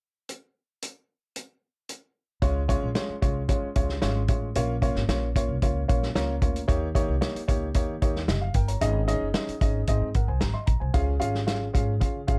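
A tight, mid-forward soul drum kit opens this danceable 1960s-style soul fragment on its own, its kick, snare and hi-hat sitting up front with a rolled-off top. At 2.4 seconds a natural, up-front baby grand piano and a woody, dark pizzicato upright bass join in, and the piano takes a fill at 5.6 seconds. The production is dark and warm with little reverb.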